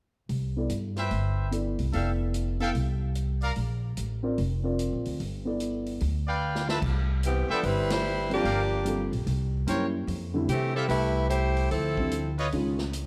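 A swung 4/4 groove drives this brassy big band swing excerpt: a growly, woody upright bass sits up front, and a natural, big-room drum kit with punchy kick, snare, hi-hat, ride and crash keeps time, while a mellow concert grand with a deep low end accompanies. A brilliant trumpet section with light vibrato adds stabs early on and returns at 6.3 seconds as a drum fill leads into the second section, where a bright, close-miked saxophone section takes the tight melody from 7.2 seconds, punctuated by a full-band accent at 7.8 seconds. Light reverb and a dark, warm production frame harmony that moves from Cmaj7 through G7 and C7b9 before closing on Dbadd9.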